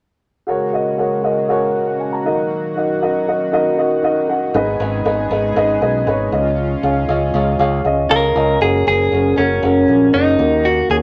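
This anthemic pop passage, cut from a longer piece, opens at 0.5 seconds with a dark, woody upright piano playing up front, backed by a shimmering, retro pulse-width pad that holds sustained chords softly underneath through its chorus. The harmony moves through F#add9, D#m, G#m and C#add9, giving the music a warm feel in a straight, steady four. A bright, punchy fingered electric bass joins at 4.5 seconds, adding a direct low end. The piano's boxy, long-sustaining tone carries a short fill that leads into the second section. At 8.1 seconds a clean, compressed electric guitar, recorded direct and picked, takes the melody up front, all set in a moderate studio reverb.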